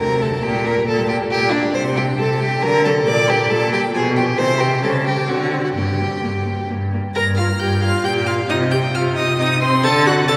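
A quick classical-period string quartet movement in G minor and 3/4 at 135 BPM, dramatic and restless, played with rubato and steeped in the long tail of a wet cathedral reverb. The first violin carries a focused, vibrato-laden melody high above, while the second violin sits up front with a smooth, even line. Beneath them the viola adds warm, expressive accompaniment with portamento, and the rich, soft-attacked cello, also up front, anchors the bass with vibrato and portamento of its own, all four bowing throughout this brief passage before it moves into a new section at 7.2 seconds and settles on a D chord.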